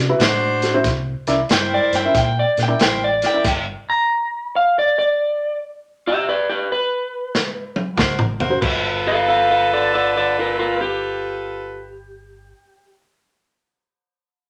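A clean electric guitar solo opens this laid-back, soulful electric blues shuffle in G mixolydian, played through a small old amp with a dark, slightly broken-up, picked tone that sits up front. Beneath it, a dark, woody upright piano and a round, punchy fingered electric bass set a swung 4/4 groove at 93 BPM. A crunchy breakbeat kit joins almost at once, saturated and gritty with dark cymbals and a tight kick, alongside soft-attack jazz stabs from a clear saxophone section. At 3.5 seconds a stop thins the band, leaving the guitar and drums to carry on until a drum fill at 7.3 seconds. The bass and horns return at 8.0 seconds over rich ninth chords as the passage moves into its next section, and the whole snippet is bathed in wet studio reverb.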